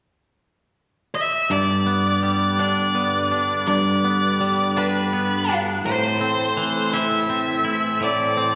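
A dark, fuzz-laden lead guitar opens this cinematic, hopeful rock excerpt at 1.2 s, carrying an up-front melody in G major at a slow 55 BPM in 6/8, tuned slightly low to A4 = 436 Hz. From 1.5 s a clean, twangy electric guitar picks compressed arpeggios over a G chord that moves to Am, while a rich, smooth string section holds bowed, vibrato-laden chords in the background. A long hall reverb of about 1.8 s gives the whole piece a spacious, wet sound.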